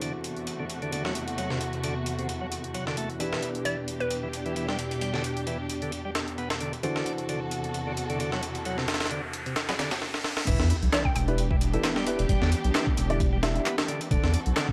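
A gritty, raw breakbeat excerpt at 132 BPM in E minor, swung on the sixteenths and cut from a longer piece, moving between D7/E and Em7 chords. A compressed, pitched-up sampler-style break sits up front, with a thumpy kick and high-tuned snare re-recorded in a large room, while a dry, overdriven analog drum machine adds handclaps and hi-hat in the background. Lush, woody strings hold sustained chords that pump against the beat, a shouting, lightly overdriven tonewheel organ with a stopped rotary speaker plays a riff through dub echo, and a boxy, mellow grand piano drops dark stabs that stop at 13.7 seconds. A hollow, detuned square pluck with chorus and a telephone tone flickers in briefly for two short melodic phrases, the first at 3.7 seconds. A very quiet riser builds from 8.3 seconds into a drum fill and the drop at 10.5 seconds, where a deep, thick, saturated sub bass arrives up front with an impact, all under light reverb and vinyl crackle.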